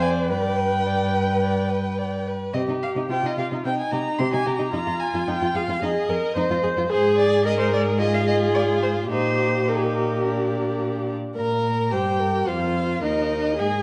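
Restless and urgent, this quick classical-period movement for string quartet moves at 108 BPM in a straight 4/4, settling into E-flat major from 6.9 seconds after a harmonic path that passes through G, C minor and F minor seventh. All four bowed players sound throughout the 13.8-second extract, which is cut from a longer piece, and each instrument carries a rich, vibrato-laden tone. The first violin sings the melody up to C6 with a smooth, even line that sits up front yet with a distant cast, while the second violin traces a steady inner line beneath it. The viola, slightly the loudest of the group, fills the accompaniment with expressive portamento from a distant position, and the cello anchors the bass close and up front. A recital hall reverb lends the ensemble a wet, resonant bloom, and the harmony arrives on a settled E-flat chord at 11.4 seconds as a new section begins.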